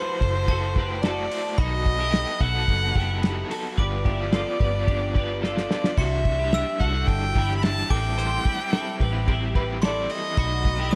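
Studio reverb gives this short cut from a longer jangly indie pop piece a roomy sheen, while the drums stay dry. At 109 BPM in a straight 4/4, the mood is restless and wistful, moving through a chord cycle of F#m7b5, B7, G7, Cadd9 and Am7 before returning to B7. A single bowed violin carries the melody up front, smooth and even with vibrato, and a glockenspiel struck with brass mallets sparkles in the background as a bell-like second line. Underneath, a twangy, compressed twelve-string electric guitar picks bright, clean arpeggios through an ensemble chorus, and a crunchy overdriven guitar adds picked accompaniment colored by tremolo. The vintage foam-muted bass enters at 0.2 seconds with a round, amped tone alongside a cloth-damped, thuddy drum kit of tight kick, medium-tuned snare, hi-hat and dark ride and splash cymbals, which plays a fill between 5.4 and 6.0 seconds.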